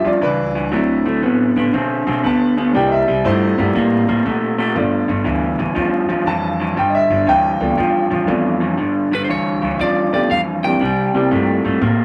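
An electric guitar through a small old amp sits up front, playing a bright, twangy, slightly broken-up, lo-fi picked riff with spring reverb in this soulful, laid-back electric blues shuffle at 119 BPM in 4/4 with a swung feel. Beneath it, a grand piano supplies intimate, boxy accompaniment with audible action noise, while a pizzicato upright bass adds a woody, growly low end from its steel strings. At 9.1 seconds a lightly driven lead guitar enters with a compressed, slightly broken-up melody, carrying a warm tone until 11.6 seconds. The harmony stays in G mixolydian, moving through G7, D9, C9 and G9 before a new passage begins at 8.8 seconds. A wet studio ambience and a layer of vinyl crackle surround the whole thing, and the music is cut from a longer piece.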